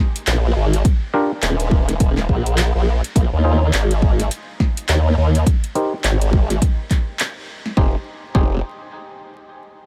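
Gritty and playful, this glitch hop excerpt swings at 104 BPM in F dorian, with a punchy, up-front electronic kick and an overdriven pop drum kit of fat snare, metallic hats and handclaps alongside a detuned, wobbling formant-sweep bass with chorus, while a stringy, muted clav enters at 1.1 seconds with overdriven stabs pumping through a low-pass filter and diffuse ambient delay, all moving from Eb5 through Bb7sus4 and Abmaj7 to Fm7 in a dry mix dusted with vinyl crackle.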